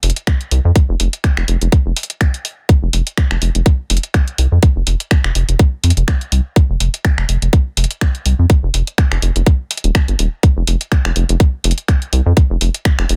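Sparse and cool, this minimal techno excerpt moves at 124 BPM in 4/4 with a light 16th-note swing, built on a rubbery, hollow square bass ranging from Eb1 to F2 with tube saturation and sidechain pumping, a tight, up-front electronic kick entering at 0.3 seconds, and a garage drum kit of finger snaps and warm hi-hats with soft clipping on the snare, all in a dry, dense, heavily limited modern master.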